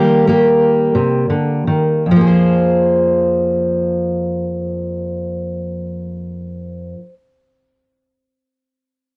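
Folk for a solo fingerpicked steel-string acoustic guitar, melancholic and haunting, moving slowly at 52 BPM in a rubato 6/8 in F minor. The full-bodied dreadnought sits up front with a cassette-tape character in a wet booth ambience, sounding like a home recording. In this short cut from a longer piece, the playing slows over the opening Eb chord before settling onto F minor at 2.1 seconds.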